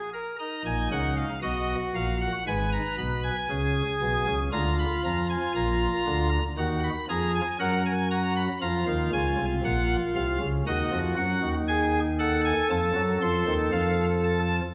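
Classical baroque-style three-part fugue in Eb minor at a straight 59 BPM, serious and driving, played solo on a pipe organ's cornet stop, whose nasal, chiffy voice with tremulant sits up front in a reverberant recital hall and sounds from 0.0 to 14.6 seconds in a passage cut from a longer piece.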